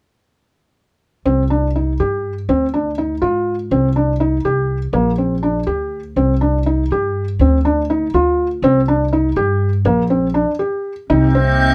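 At 1.3 seconds a felt-muted upright piano and a pizzicato upright bass begin together, both up front. The piano plays soft, intimate arpeggios with short sustain, and the bass has a woody, thumpy gut-string tone. This restless, hypnotic chamber piece in C minor moves in an uneven 5/8 at 244 eighths per minute with a straight feel. The harmony circles back to C minor between Ddim, Gm/Bb and Dm7, and a brief break closes the first section. At 11.1 seconds a mellow, distant clarinet enters with a single classical-style line. At 11.2 seconds an icy, crystalline glass pad adds sustained chords with a slow attack, chorus and its own reverb, under a light room reverb, before this cut from a longer piece ends.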